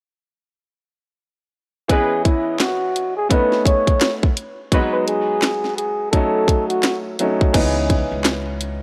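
A dry, gritty recording in a small room frames this dark, tough boom-bap hip-hop cut, an excerpt from a longer piece moving at 85 BPM in 4/4 with a swung sixteenth-note feel in C# minor. At 1.9 seconds the garage drum kit arrives up front, its layered electronic sound built from a tight kick, cracking snare, hi-hat, handclaps and crash cymbal, alongside a warm, woody upright piano laying down chords that move from C#m9 through B9, G#m7 and D#m7b5. A bucket-muted trumpet carries the solo melody, its veiled, dark tone marked by scooped notes and a smooth top, with analog delay trailing its phrases until 7.0 seconds. A clear horn section sits in the background with tight, octave-doubled stabs and light vibrato, also touched by analog delay, before dropping out at 5.0 seconds. At 7.5 seconds the harmony returns to C#m9 as a pizzicato upright bass enters with a growly, steel-stringed low C#, joining the piano and drums through to the close.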